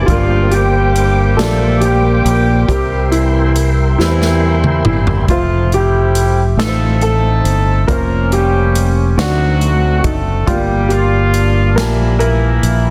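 A punchy, up-front fingered electric bass anchors this soulful, jubilant slow gospel excerpt in F major at 46 BPM in 6/8, while a clear concert grand piano and a vintage horn section with light vibrato and octave doubling carry the melody, a woody upright piano accompanies, a tonewheel organ holds sustained chords through a slow rotary speaker until 5.3 s, and an airy big-band drum kit with a medium-tuned snare plays a fill from 4.0 s, with light studio reverb and a dense, heavily limited modern master.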